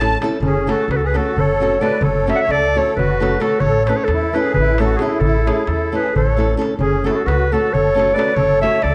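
A reedy, shimmering musette accordion, bright fingerpicked nylon-string guitar, thumpy pizzicato upright bass up front and a crisp metal-shell darbuka in the background open this virtuosic, wild Balkan wedding-band folk piece in 7/8 at 264 BPM counted in eighths, and at 0.4 seconds a warm, soft-attacked, classical-style clarinet takes the solo melody up front over F#m and A harmony, the whole piece sitting in a dark production with recital-hall reverb.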